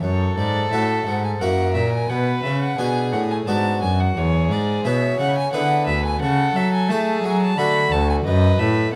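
Dance-like and radiant, this baroque-style sonata movement with continuo moves at 88 BPM in 3/4. A reedy gut-string violin carries the melody with light vibrato over a second, rich period-style violin line, while an airy, brilliant French-style harpsichord plucks its octave strings in accompaniment and a nasal, up-front cello holds the bass, the ensemble captured in close, detailed sound with light reverb in this short cut from a longer piece.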